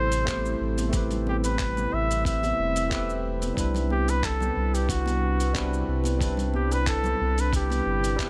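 The recording has a light reverb, a short cut from a longer sunset chillout piece with a wistful, relaxed mood and a gentle swing. Up front, a flugelhorn carries the solo melody with light vibrato and a smooth top, its pop-style phrasing trailed by delay, while a round, deep sine sub bass sits forward beneath it with a touch of tube saturation. A bright, barky tine electric piano plays clean, direct accompaniment, also with delay, and an airy, breathy pad holds soft, detuned chords with a slow attack, long release and chorus in the background. A dusty, gritty sampler-style soul drum kit of handclaps, hi-hat and shaker enters at 0.1 s, and an overdriven, thumpy electronic kick joins at 0.3 s, both compressed, in studio ambience. Ringing acoustic congas, played with hard hands and saturated, sit quietly in the background as the harmony moves from Am9 to Cmaj9 at 3.6 s.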